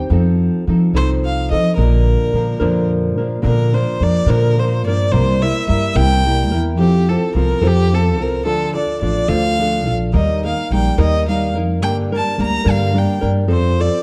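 A straight 6/8 pulse carries this proud, romantic mariachi folk excerpt, with a dark, fingerpicked flamenco guitar and a woody, thumpy pizzicato upright bass setting the accompaniment from the opening. At 1.0 seconds a single bowed violin enters up front with a clear, smooth, even tone and vibrato, singing the melody close to the listener over the guitar and bass. A moderate recital hall reverb and a dark production surround the trio, which shifts into a new section at 3.4 seconds before the cut ends at 14.0 seconds.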